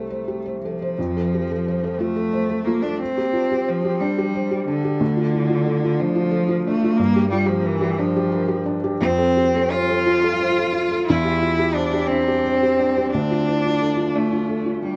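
A felt-muted upright piano and a rich, bowed cello begin together in this tender, hopeful neoclassical excerpt, moving in a rubato 6/8 at about 59 BPM in F major. The piano, soft and dark with audible action noise from its thick felt, sits up front as the intimate accompaniment. The single cello carries a smooth, vibrato-laden second line touched with tape echo, while the harmony drifts from C6 to F, through Csus2, Dm and Gm7, returns to F and moves via Cadd9/E back to Dm, all in a close, detailed sound with light reverb.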